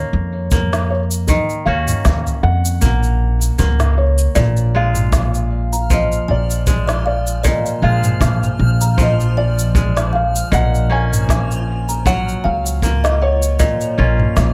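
Wistful and intimate, this folktronica fragment with a lightly swung feel sets a soft, dark, thick-felt upright piano melody over crisp, ringing fingerpicked kora arpeggios and a woody, thumpy pizzicato upright bass that sits up front. From 0.5 seconds a distant, punchy brushed kick joins an organic electronic kit whose woody snare, toms and cabasa were re-recorded in a large room. A hollow, boxy kalimba second line enters in the background at 4.4 seconds, and at 5.8 seconds a reversed, detuned, granular texture adds a dreamy, sustained swell.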